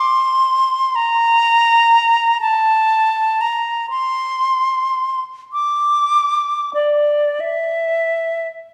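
A reverberant recital hall surrounds this recording, its wet 1.5-second decay giving the solo line a spacious, churchlike halo. A single silver concert flute plays alone from 0.0 to 8.5 seconds, placed up front so its airy, metallic tone sits close while the hall blooms behind it. This brief classical fragment, cut from a longer piece, moves in a free, rubato 6/8 that lets each phrase breathe at its own pace. The flute stays between D5 and D6, shaping its notes with a soft attack and vibrato. The mood is meditative and lonely, the unaccompanied voice drifting through the open space like a private reflection.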